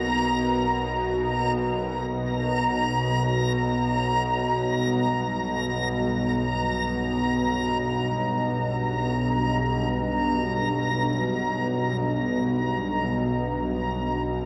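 In free time, this dark ambient drone unfolds as a dark, cavernous passage cut from a longer piece, tuned slightly sharp to A4 = 441 Hz. Up front, a bowed-like drone holds low between B1 and B2, string-like and tense with a detuned sawtooth edge, a breath of noise and a touch of vibrato. Beside it, a reversed, swelling texture sits high on A#5, its granular, triangle-based tone dreamy and soft at the onset. In the background, a deep, moody ambient pad sustains chords from G3 to D#5, its chorused sub-octave body shaded by a moving notch, and it fades out across the whole span. The harmony rests on B before shifting to G at 3.9 seconds. A huge, wet reverb with an 8.3-second tail surrounds the sound, and a worn cassette-tape character adds warbly pitch drift.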